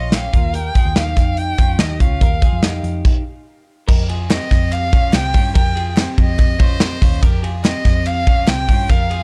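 A dry, gritty recording with studio reverb carries this restless, wistful jangly indie pop excerpt in F minor at 144 BPM, where an expressive bowed violin with vibrato and portamento sings over bright, twangy twelve-string electric guitar arpeggios, a dark, round muted electric bass with tube saturation, and an up-front, punchy drum kit roughened by 12-bit sampler grit, with a stop at 3.1 seconds before the music moves from Ebadd9 to Fsus2, very quiet crisp handclaps from 4.3 seconds, and a brilliant, forceful trumpet line with scooped notes at 6.6 seconds.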